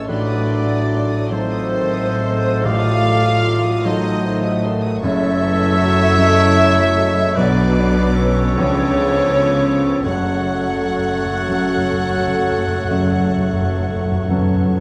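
Bathed in a dark scoring-stage reverb, this brooding, passionate romantic passage for piano and orchestra moves in a slow, rubato 12/8 at 38-53 BPM, opening on a diminished chord before settling into F# minor at 5.0 s. A polished, long-sustaining grand piano carries the melody, joined high above by a lush, background violin section that also plays melody. Around it, a clear oboe, a mellow clarinet, a second smooth violin line and a hollow, distant flute group weave secondary lines, while a roomy bassoon and an expressive, portamento-tinged viola section fill the accompaniment. Dark French horns and vintage-toned trombones hold sustained chords, a trumpet section adds stabs, and rich cellos with soft-edged double basses anchor the bass, until calf-headed timpani enter with a fill at 10.0 s.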